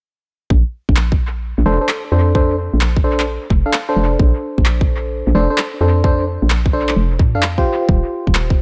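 A hollow, knocking FM bass with a punchy, fast attack and tube-saturated grit sits up front in this bouncy, soulful two-step garage excerpt, entering at 0.5 seconds together with a tight, layered electronic kick over swung sixteenths. Overdriven analog handclaps with delay arrive at 1.0 seconds, and from 1.7 seconds a glassy, bell-like FM electric piano plays warbling vintage stabs through chorus, a low-pass filter and echo, with a noise layer beneath its decaying tones. The dry, echo-heavy mix rests on Bbmaj9 before shifting to Eb69 at 7.7 seconds in this fragment of a longer piece.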